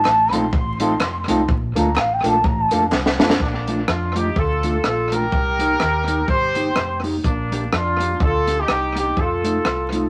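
Vinyl crackle and moderate studio reverb frame this cheerful, upbeat ska excerpt in Bb major at 125 BPM with a swung feel. An airy, distant bamboo bansuri carries the opening melody over very quiet group handclaps and woody upright piano stabs until a smooth, up-front horn section with light vibrato takes the tune at 3.4 seconds. Throughout, a dark, round hollow-body electric bass, a clean fingered electric guitar and a compact cocktail drum kit with a high-tuned snare, punchy kick and tape echo keep the music moving, and the drums play a fill just before the horns arrive.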